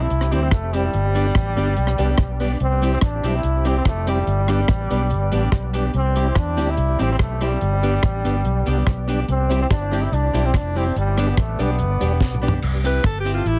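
A joyful, upbeat ska excerpt opens with a brilliant trombone carrying the melody, its distant, roomy tone touched by light vibrato and analog delay. Beneath it, a clean electric guitar is picked through spring reverb, and a dark, round, foam-muted bass with tube saturation sits up front. A deep reggae drum kit joins almost at once, dry and close, with a high-tuned snare, tight kick, rim clicks, hi-hat, toms and crash cymbal. In the background, a fat, lightly overdriven tonewheel organ adds percussive stabs with key click, chorus vibrato and a slow rotary speaker. The harmony moves steadily between C and G, and a drum fill at 12.2 seconds leads to a forceful, smooth-topped alto saxophone taking over the melody at 12.9 seconds, placed up front. The recording has a heavily compressed, radio-like sound with little reverb.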